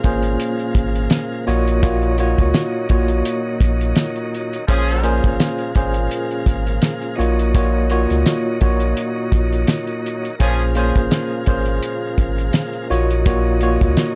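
Moody and dark, this boom-bap hip-hop cut rides a swung groove from a cloth-damped, thuddy acoustic kit with a fat snare and tight kick, anchored by a deep, sine-toned sub bass sitting up front. A clean tine electric piano with a cassette-tape tint and plate reverb carries the Bbm7 to Ebm7/Bb changes, while a smooth tonewheel organ holds sustained chords through a fast rotary speaker, its key click audible. A distant, roomy jazz-style horn section adds brief tight stabs with delay at 4.7 and 10.4 seconds.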